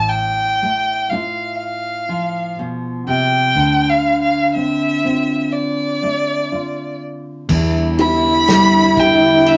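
A moderately reverberant studio room frames this melancholic, heartbroken acoustic folk-pop ballad, cut from a longer piece, at 61 BPM in 4/4 and tuned to A4 = 436 Hz. A focused violin with vibrato sings the melody up front over full-bodied, thumb-plucked nylon-string guitar with audible finger squeak and a round, punchy, foam-muted electric bass, as the harmony moves from F/A to Dm7. At 7.5 seconds the chord shifts to Em7 as a solo French horn with light vibrato adds a soft-attack second line, a lush, woody string section sustains chords in the background, and an airy acoustic drum kit played with bundle sticks joins, with a thick-felt upright piano adding mellow arpeggios from 8.0 seconds.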